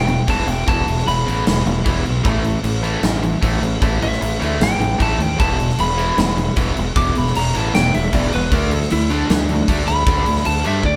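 A straight 4/4 hard rock drive at 153 BPM in E minor is set by a big, natural-sounding acoustic kit with a tight kick, medium-tuned snare and crash cymbal, sitting up front, alongside a fuzzy, overdriven fingered bass that growls low and close. A bright, double-tracked cranked stack guitar digs into a picked riff while a slightly broken-up, compressed lead guitar with slapback echo solos across the whole 11 seconds, over chords moving from Em to A5, E5 and D5. The heavy, driving feel comes across as a band playing live in one room with light reverb, cut from a longer piece.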